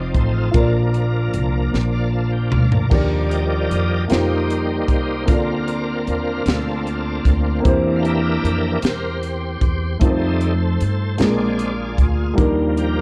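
A slow gospel sway in 6/8 at 51 BPM in Bb major, this soulful, reverent cut features a bright, shouting tonewheel organ with key click, light overdrive, chorus vibrato and slow rotary speaker that takes a solo from 2.9 seconds over a natural baby grand piano, a woody, thumpy pizzicato upright bass and a crisp, airy fusion kit with a high-tuned snare and punchy kick that plays a fill just before the solo, all under light reverb and the worn, warbly pitch drift of old cassette tape, moving through chords like Ebmaj7, F9sus4 and C7/E.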